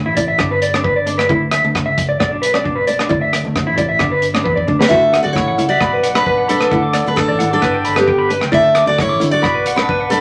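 A straight 4/4 groove at 133 BPM drives this sunny, danceable highlife guitar band excerpt in D major, where a crunchy, gritty breakbeat kit with a high-tuned snare and tight kick sits under a round, punchy fingered bass, a slightly broken-up electric guitar through a small old amp spins up-front arpeggios bathed in spring reverb, a flamenco guitar with finger squeak murmurs accompaniment in the background, and after a drum fill a bright fingerpicked steel-string acoustic guitar takes the melody at 4.9 seconds over chords moving between G, Dadd9 and Bm.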